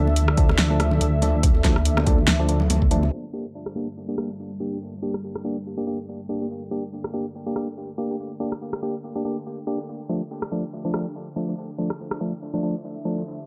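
A dark, sustained analog pad with detuned sawtooth depth, a hollow, organ-like percussive stab with dub echo, and a saturated, wobbling sine-and-sawtooth bass open this brooding, cavernous deep dubstep cut at 142 BPM with a swung half-time feel in G dorian, joined briefly by a tape-warm electronic kick and ringing high-tuned congas in a distant room, and for much longer by an up-front house kit of fat snare, rim click and metallic hats; the bass, congas and kick fall away by 3.1 s, leaving filter sweeps on the pad and stab over the drums in a dry, gritty, low-passed mix.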